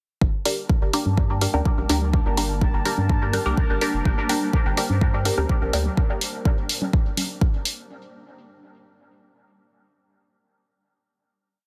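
This short, hypnotic and hazy dub techno piece opens at 0.2 s with a deep, up-front electronic kick in a steady four-on-the-floor pattern, joined by a soft, round sub bass playing a syncopated riff with sidechain pumping over a single minor chord. Tape-warm hi-hats, re-recorded in a small room, add open hats and a backbeat, while a muted, detuned filtered chord stab plays off-beat chords in one shape moved in parallel, colored by phaser, dub echo and pumping. From 0.7 s a very quiet, bubbling sawtooth texture holds a high note through random filter steps with chorus and its own reverb, and from 1.0 s a dark, cloudy granular pad sustains blurred chords in the background with slow attack, long release and pumping. Dry analog congas sit behind the groove, with high and low strokes trailing dub echo. A light digital ambience surrounds the parts, and the master is dense and heavily limited.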